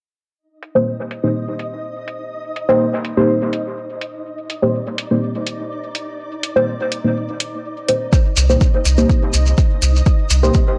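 This deep, hypnotic dub techno piece in C minor moves at 124 BPM in a straight 4/4, and the passage is cut from a longer work. It opens at 0.6 seconds with a metallic, overdriven electronic hi-hat, its tone softened by a low-pass filter. A flickering, grainy granular texture with a slow attack and long release joins it, lightly reverberant and gently pumping. Up front sits a soft, nasal chord stab holding a Cm7 throughout, darkened by a sub octave and a filter sweep, and coloured with chorus, phaser, dub echo and sidechain pumping. At 8.1 seconds an overdriven, up-front kick drum arrives alongside a close, mellow acoustic shekere, and at 8.4 seconds a round sine sub bass settles on a low C, pumping beneath the groove. The whole sits in light digital ambience.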